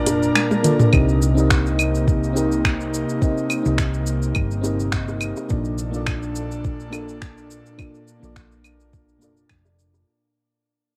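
Sunset chillout in C dorian at 105 BPM with a gentle 16th-note swing, warm and relaxed, where a soft, round FM electric piano with chorus, analog delay and shimmer reverb and an airy, breathy detuned pad with its own shimmer float over a dark, hollow-body fingered bass, while a faint wind-like noise texture lingers only until 0.9 s, a tape-warm R&B kit of claves, finger snaps, metallic hi-hat, shaker and toms plays a short fill from 0.4 s, tight high-tuned bongos sit in the background and a soft electronic kick joins at 0.9 s as the chords move from Bbmaj7 to Cm7, the whole excerpt fading out from there with the light reverb of a home cassette recording.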